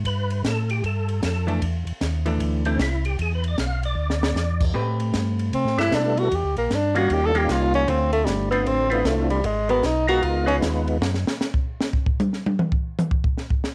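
Smoky and soulful, this swung soul jazz organ trio excerpt at 153 BPM opens with a percussive tonewheel organ melody soloing through slow rotary speaker, chorus vibrato and plate reverb over a round, key-clicking organ bass line up front, with a clean, compressed hollow-body guitar comping from 1.5 s, a dry cocktail drum kit with dark cymbals, a high-tuned snare and a punchy kick, all on cassette, and a breathy, soft-attack tenor saxophone taking the solo from 4.7 s before the drums close with a solo from 11.0 s.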